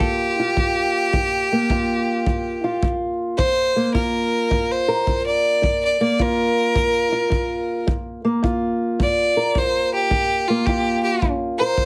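A clear, focused fiddle with light vibrato sits up front over a dark, woody fingerpicked acoustic guitar and a punchy, natural kick drum, opening this short excerpt of smoky, mournful acoustic country blues in G minor on a Gm7 chord. The tune moves at 107 BPM in 4/4 with a swung eighth-note feel, and the fiddle takes a solo from 3.4 seconds as the old-stringed, boxy guitar keeps up its accompaniment. Light reverb surrounds the mix, and heavy multiband compression gives it a squeezed, radio-like sound.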